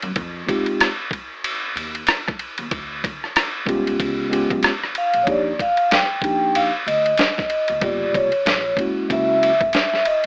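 A relaxed, cool jazz-hop groove at 94 BPM rides a swung sixteenth feel, with a gritty, compressed sampler-style kit of thumpy kick, medium-tuned snare, hi-hat, rim click and ride cymbal sitting up front over a woody pizzicato upright bass from the start. A mellow, clean tine electric piano comps through lush extended chords such as Fm7, Db7#11 and Ebmaj7, and at 5.0 seconds a soft-mallet vibraphone enters with a ringing, metallic melody shimmering with slow motor vibrato. Light reverb and an AM-radio coloring give this short cut from a longer piece a dusty, lo-fi haze.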